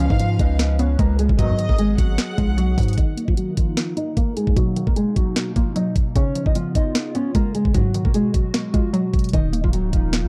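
A half-time trap groove drives this hard-hitting, dark hip hop cut, taken from a longer piece, with an electronic drum kit placed up front: a knocking kick, a sharp snare and bright hi-hats with a tape-like glow. A deep, long 808-style bass with a sine tone booms under the opening, drops out at 3.0 seconds while a filter sweep runs through the middle stretch, and returns at 9.3 seconds. The lead is a dark, thumb-plucked classical nylon-string guitar, softened by a low-pass filter and trailed by delay. Beneath it, a bouncy, detuned square-wave pluck with chorus supplies the accompaniment, and a mellow, flute-like pad with a warbling vintage character holds sustained chords in the background. In the opening seconds, a smooth bowed violin section adds a second line with vibrato and delay, while a tight brass section punctuates the start with brief stabs. The harmony moves through dominant seventh, minor seventh, major seventh and minor chords over a small, dim room sound.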